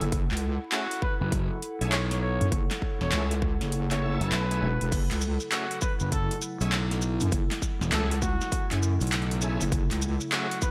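A funky, swaggering glitch hop excerpt with a swung feel opens on background stabs from a bright, shouting tonewheel organ with slow rotary, a heavy, saturated wobble bass, an overdriven dubstep kit with deep snare, metallic hats, handclaps and crash, and a warbling, nostalgic pad texture, joined almost at once by a punchy, up-front electronic kick. A mellow, distant trumpet carries the solo melody with light vibrato and digital delay, while a dark, round fuzz fingered electric bass adds to the low end, and the kick drops out briefly before maracas enter at 4.9 seconds with a grainy, close shake. A second lo-fi, wave-folded tape pad adds sustained chords from 5.4 seconds, all set in a bright 1980s-style digital sheen with vinyl crackle and light ambience.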